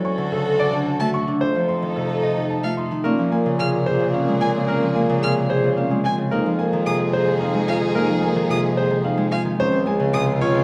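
Hypnotic and meditative, this excerpt of minimalist classical pattern music moves at 110 BPM in a straight 3/4, settling into Bb minor from 3.0 seconds after opening on D and F7 chords. A clear concert grand piano carries the melody with a smooth, vintage tone, while an up-front, fingerpicked Celtic harp rings out the accompaniment beneath it. A vibraphone played with soft mallets and its motor off adds mellow, metallic arpeggios, and a solo bassoon holds the bass line with a present, lightly vibrato tone. A rich chamber string section sustains focused, bowed chords, and a single violin enters at 1.0 second with even, high arpeggios and a silky top. The harmony moves through Bbm7, Fm7 and Dbmaj7, all set in a moderate recital hall reverb.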